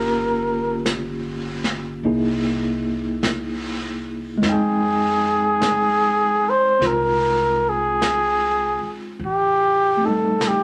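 A breathy, mellow trumpet sits up front, playing the solo melody with light vibrato and scooped notes in this wistful, smoky jazz ballad in F minor, taken from a longer piece. It moves at a slow 50 BPM in 4/4 with a swung eighth-note feel, tuned to A4 = 442 Hz. A worn, slightly out-of-tune tine electric piano, heard through a combo amp with medium tremolo, carries the accompaniment through Gm7b5, C7alt, Fm9 and Am7b5. Underneath, a woody pizzicato upright bass with steel strings holds the low end, while a vintage brush kit with a dark, smooth sound and a rolled-off top enters at 0.9 seconds, bringing brushed snare and hi-hat. A moderate studio reverb gives the ensemble a modest sense of space, and lossy compression artefacts are audible across the 10.6-second clip.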